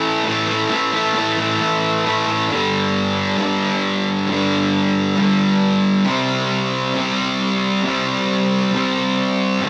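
A fuzz-drenched electric guitar carries this raw, rowdy rock excerpt entirely by itself, picked and double-tracked so it sits thick and up front in the mix. Its tone is bright and distorted, ranging from G2 up to C4. The tempo is 134 BPM in a straight 4/4, and the tuning sits slightly below standard pitch, at A4 = 437 Hz. The guitar opens on an A5 power chord, shifts to G5 at 2.5 seconds, and moves to C5 at 6.1 seconds. A moderate studio reverb gives the part a short tail of room around its grit.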